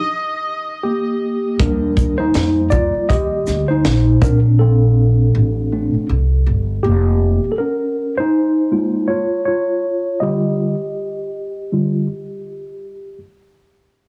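Smooth, warm jazz-hop at 80 BPM in Eb lydian with a swung 16th feel opens this excerpt with a brief, buzzy, breathy phrase from a trumpet with metal mute in plate reverb and tape echo, before a worn, slightly out-of-tune tine electric piano with light overdrive enters at 0.8 seconds and takes a filter-swept solo from 1.6 seconds, where a woody pizzicato upright bass and a dry, punchy compact cocktail drum kit (high-tuned snare, hi-hat, kick and shaker, touched with 12-bit sampler grit) join up front, the whole mix carrying a heavily compressed, radio-like sound in a small room.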